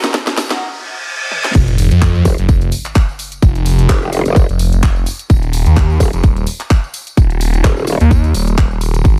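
A saturated, up-front low end and a tight, layered electronic kick dominate this aggressive, swaggering bass house cut, set in a digital ambience. A thick, swirling detuned saw bass runs throughout with a phaser and sidechain pumping. Around it sit a garage drum kit with a cracking snare, crash, handclaps, toms and hi-hats, and a jingly, close and dry tambourine tucked in the background. The short build-up opens with a drum fill and a filter sweep on a nasal, band-passed chord stab carrying phaser, lush chorus and digital delay. A riser, reverse cymbal and sub drop then usher in a break from 0.6 seconds. The drop lands at 1.5 seconds with an impact, and at 2.3 seconds a growling, wobbling growl bass enters, bright and compressed with chorus and a formant filter, before falling away at 8.0 seconds.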